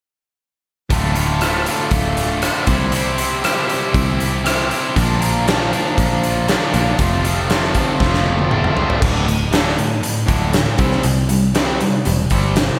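Classic rock at 118 BPM in D minor, driving and swaggering, where a bright, overdriven, double-tracked electric guitar riff sits up front over a growly, punchy picked bass and a big acoustic drum kit with a fat snare, tight kick, crash, hi-hat, rim click and toms in a stone-room sound, all three playing together from 0.9 seconds through a Dm–C–Bb–F progression until a drum fill at 8.0 seconds leads into a power-chord passage on D5 and C5 at 9.0 seconds, the whole mix set in a moderate, lush hall reverb for a big arena feel in this clip cut from a longer piece.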